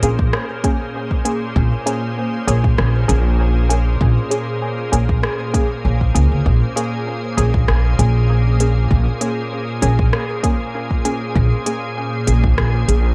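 A lightly swung 4/4 groove at 98 BPM rides on smooth hi-hats and rim clicks from an overdriven electronic kit, with a deep, layered kick joining at 0.2 s, both drums carrying the echo of a large room. This is a hazy, meditative slice of ambient dub in Bb minor, resting on a single Bbm7 chord. A woody, dark pizzicato upright bass sits up front, while a calm, warbling organ-like pad holds slow-attack chords with ensemble chorus, and muted sawtooth dub stabs with a filter sweep drift through dub echo, all within a light reverb.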